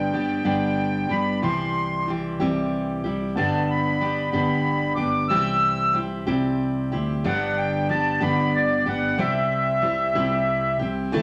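Acoustic folk in a warm, peaceful 6/8 at 62 BPM, where a reedy, sweet accordion with light tremolo tuning carries the melody up front over a full-bodied picked steel-string guitar with audible finger squeak, a mellow felt-muted upright piano tracing soft arpeggios in the background amid its action noise, and a direct, amped fingered electric bass, all set in a large studio reverb as the harmony alternates between G and C in this brief cut from a longer piece.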